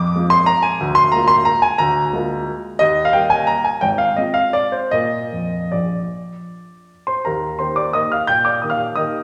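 A rubato waltz in 3/4, its tempo flexing between 146 and 201 BPM, gives this short classical piano piece an elegant, playful lilt in Eb major, tuned to A4 = 439 Hz. A solo grand piano, polished and up front with a warm, present tone, spans Ab1 to G6 for the full 9.2 seconds, moving through Fm, Bb7/D and Eb before settling back on Eb at 7.3 seconds as a new section begins. A wet scoring-stage reverb with a 1.6-second decay surrounds the instrument, and the passage is cut from a longer work.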